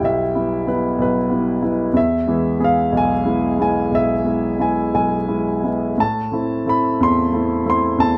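A concert grand piano plays alone through this brief 8.2-second classical excerpt, a reflective, dark, lyrical piece in 6/8 at 57-63 BPM counted in dotted quarters with free rubato, its intimate, up-front sound carrying deep bass, long sustain and audible action noise under light reverb as the harmony moves from E minor to E major at 2.0 seconds and to A minor at 6.0 seconds.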